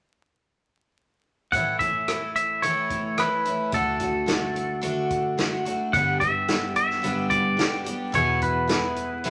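A clean, compressed, twangy electric guitar carries the melody up front in this hopeful, jangly folk rock and heartland rock excerpt, backed by a bright, shimmering, octave-doubled twelve-string acoustic guitar with audible finger squeak, a round, foam-muted fingered electric bass sitting in the background, and a vintage drum kit with a punchy kick, medium-tuned snare, rim click and hi-hat, all playing together from 1.5 s to 9.3 s over A, D, G and E chords in a moderate studio reverb with vinyl crackle.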